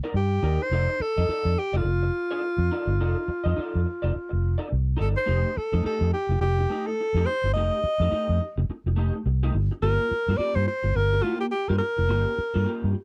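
A breathy alto saxophone carries the melody up front in this cool, sly funk excerpt, its close-miked, whispered subtone and soft attack giving the jazz-style solo an intimate feel, with vibrato colouring its clear line. Beneath it, a vintage muted fingered electric bass sits just as far forward, dark, round and punchy with a foam-muted thump in the low register. An electric guitar through a small old amp supplies quieter accompaniment, slightly broken-up, picked and compressed, with a lo-fi tone thickened by ensemble chorus. The groove moves at 106 BPM in 4/4 with a swung sixteenth-note feel, opening on a rootless Cm9 and F13 before shifting at 5.3 seconds to F9 and then Gm7. The sound is dry and close, like a 1970s studio session, and the passage is cut from a longer piece.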